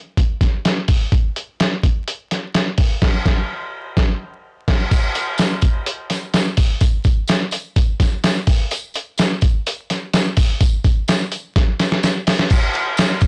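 A straight 4/4 groove at 126 BPM drives this bright, youthful indie pop clip from a longer piece, carried up front by a lo-fi, sampler-style drum kit that sounds pitched down, compressed and muffled, with a thumpy kick, a medium-tuned snare, hi-hat, ride and crash, and a band accent from 3.0 seconds before a jingly, close, dry acoustic tambourine joins in the background at 4.9 seconds, a drum fill arriving at 11.6 seconds, all inside a blown-out, overdriven recording with vinyl crackle and moderate studio reverb.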